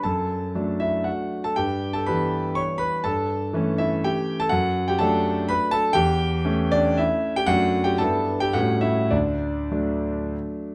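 A clear concert grand piano opens on a D major chord and carries this romantic classical dance alone, in a proud, graceful triple time with dotted rhythms. The tempo moves freely with rubato, somewhere between 96 and 131 BPM, lending the 3/4 lilt an elegant, unhurried poise. The harmony turns through E minor and A7 back to D, with the changes gathering more closely near the close before settling home on D at 9.1 seconds. The piano spans from a deep bass D2 up to C#6, and its tone is natural with long sustain, placed up front by close, detailed microphones. A moderate recital hall reverb surrounds the instrument, and the passage, cut from a longer piece, lasts 10.7 seconds.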